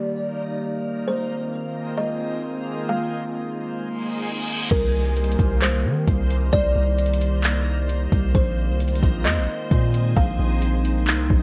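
Melancholic and spacious, this atmospheric cloud-rap fragment at 132 BPM in a half-time 4/4 feel, set in C minor, opens with a woody, ringing kalimba melody softened by a low-pass filter and delay, over a warbly, nostalgic lo-fi pad carrying chorus and sidechain pumping, while a reversed, dreamy backwards texture glimmers quietly beneath. A downlifter and reverse cymbal at 4.0 seconds lead to the entrance at 4.7 seconds of a deep, sine-like 808-style bass placed up front and a smooth R&B drum kit with soft kick, metallic hi-hats, handclaps and crash cymbal, re-recorded in a large room. The harmony moves between Cm7 and Bb9sus4, and the overall mix stays dry and close.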